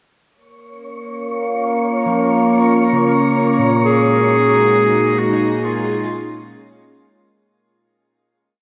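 A short, weightless ambient piece at 68 BPM opens at 0.6 s on a breathy, detuned chorused pad moving slowly through A#m, G#sus2 and C#, soon joined by a faint wind-like tuned noise held high and a nasal, overtone-sweeping drone on A#3 sitting up front. From 2.1 s, a dark, clean electric guitar adds fingered arpeggios through tape echo, arranged as three slow loops of unequal length drifting against one another. At 3.8 s, a clear, smooth classical-style clarinet enters with a solo motif of arching phrases, all set in a wet shimmer reverb as the mix fades out.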